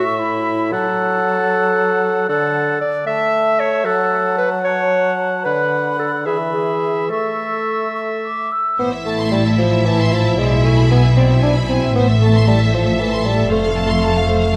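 Quick, spirited classical-period orchestral music in a rubato 6/8 at 76 BPM, opening cheerfully in A major with a clear oboe, a mellow, hollow flute and an up-front clarinet weaving second lines over a close-miked bassoon accompaniment, then turning to A minor at 8.8 s as focused, lush bowed violins take the melody and a second line, backed by a smooth viola section, a rich cello section and a distant, expressive double bass section, all set in a wet concert hall reverb.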